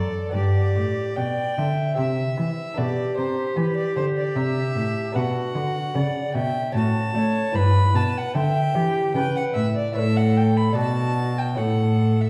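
A nasal, gut-strung cello sits up front in this serene baroque-style sonata movement with continuo, bowing a period-style bass line with a light vibrato beneath the ensemble. Above it, an airy, woody alto recorder carries the flowing melody with a soft attack, gentle vibrato and lifted highs, while a single reedy violin, heard close, plays a second line in a higher register. A delicate fingerpicked lute fills out the accompaniment on double gut strings, some of them octave-doubled. The music moves at an unhurried 75 BPM in 3/4 and G major, drifting from G and C through B minor and E minor before settling on A near the close. The whole group is heard from further back in a reverberant recital hall, with vinyl crackle over this 12.3-second passage cut from a longer piece.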